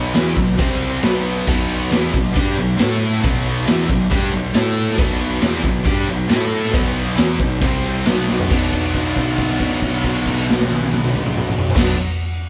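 Dark and cathartic, this quiet-loud alternative rock passage, cut from a longer piece, layers a bright, double-tracked high-gain guitar riff with a compressed fuzz guitar in the background and a very quiet, sludgy overdriven guitar, all over a punchy fuzz-soaked picked bass and a raw garage drum kit that sits up front with a boomy kick, gritty saturation and a pumping small-room sound. Far beneath, a very quiet tonewheel organ holds clear, clean chords through a slow rotary speaker with chorus vibrato and key click, while a large studio reverb gives the live-in-one-room band some space. A drum fill at 8.3 seconds leads into a new section built on a held note that lasts until 11.8 seconds.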